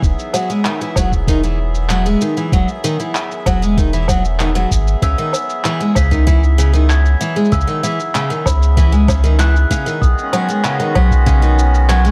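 A dark, warm studio sound frames this short pastoral folktronica passage in a steady, straight four. A deep, round sine sub bass with tube saturation sits up front, and a soft, tape-toned electronic kick drum pulses beneath it until it drops out at 11.4 s. Muffled, pitched-down electronic cabasa, woodblock and handclaps add a compressed, sampler-style texture that sounds re-recorded in a large room, while a reedy, vintage accordion holds band-limited sustained chords with a slow beating. From 0.3 s a boxy, shimmering twelve-string acoustic guitar plays picked, octave-doubled arpeggios up front, touched with tape echo. At 5.0 s a mellow, bell-like glockenspiel struck with rubber mallets adds a ringing second line, also carrying tape echo, as the harmony moves from Emaj9 through C#m9 to B69.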